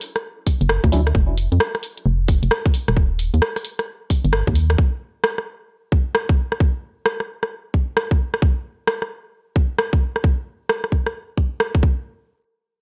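A tape-warm garage kit opens this soulful, sunny slice of two-step UK garage with hi-hat and rim click swung on the sixteenths, and a tight, up-front electronic kick joins at 0.5 seconds. A dark, hollow FM bass with an organ-like, percussive tone and tube saturation plays until 4.8 seconds, while a brief, nasal organ stab in lush chorus and digital delay flickers over a Dmaj9 chord near 0.9 seconds. The chord then drops away as the bass and the layered drums carry on under studio reverb in an otherwise dry mix.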